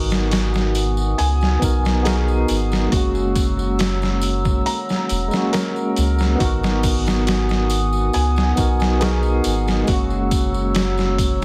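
A slow, straight 69 BPM trip hop groove in G# minor sets a smoky, melancholic tone, with a gritty, pitched-down sampler drum kit thumping up front from 0.1 s, a round dub sub bass, a tremolo-laden electric piano with tape echo and 12-bit grit, a detuned, chorused analog pad, soft felt-muted upright piano arpeggios in the background, and a distant tambourine, all over a dense, heavily limited master with vinyl crackle as the chords move between G#m7 and F#7 in this excerpt cut from a longer piece.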